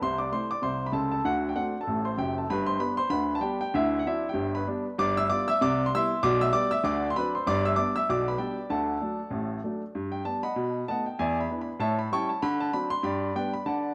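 Bathed in a wet spring reverb and heard from further back in the room, this short stride piano fragment of a longer piece features a natural, warm baby grand that still sits up front as it plays solo throughout its 13.9 seconds. At a brisk 194 BPM in 4/4 with a swung eighth-note feel, the playful, swinging passage moves through G major changes across a broad span of the keyboard, from deep bass notes to the upper treble. Around 9.9 seconds a new section begins, cycling through a chain of dominant chords before landing back on G.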